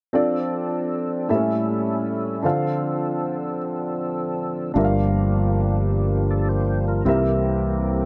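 Soulful and hopeful, this short gospel passage cut from a longer piece moves in a slow 6/8 at 52 beats per minute, felt in dotted quarters, in F major. A warm baby grand piano with a worn character and long sustain carries the accompaniment from 0.1 seconds, while a fat tonewheel organ holds sustained chords alongside it, lightly overdriven, with chorus vibrato, audible key click and a slow rotary speaker. The harmony travels from F6 through A7 and Dm7 before settling onto Gm7 and then C7. At 4.8 seconds a bright, growly fingered electric bass enters low in its register, punchy and direct. All three instruments sit up front in a light reverb, giving the passage an intimate, churchly glow.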